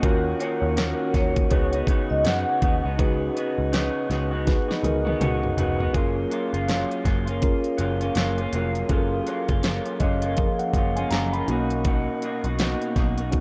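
Dreamy and hazy, this swung indie bedroom-pop clip at 81 BPM in F# major floats over an up-front pop drum kit with a knocking kick, fat snare and crisp hats dusted in 12-bit sampler grit, a round foam-muted picked bass, a dark, slightly broken-up electric guitar thick with lush chorus and vibrato, and a mellow, clean tine electric piano that takes a fill from 9.6 s, while a ringing vibraphone with tape echo drifts in briefly at 0.4 s before the drums fill into a settling F#maj7 at 5.9 s.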